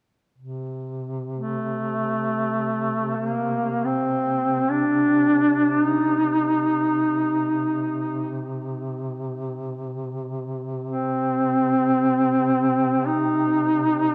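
A warm, roomy duduk carries the longing, mournful melody of this free-time Caucasian folk lament in C dorian, sitting up front yet distant with vibrato and scooped notes from 1.4 s, over a mellow, close-miked duduk drone on C3 that starts at 0.4 s with its own vibrato and scoops, the pair steeped in a cathedral reverb within a dark production, in a fragment cut from a longer piece.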